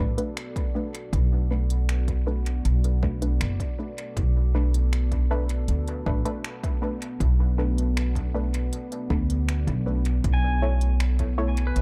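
A meditative, spacious ambient dub fragment opens with a woody, thumpy upright bass up front and muted, detuned chord stabs drenched in dub echo, joined by crisp electronic hi-hats and finger snaps, a punchy overdriven kick and a deep, moody sawtooth pad holding Bm7 before the harmony moves to A at 10.2 seconds, where a twangy pedal steel guitar enters with echoing arpeggios at 10.3 seconds in a dry, echo-heavy mix.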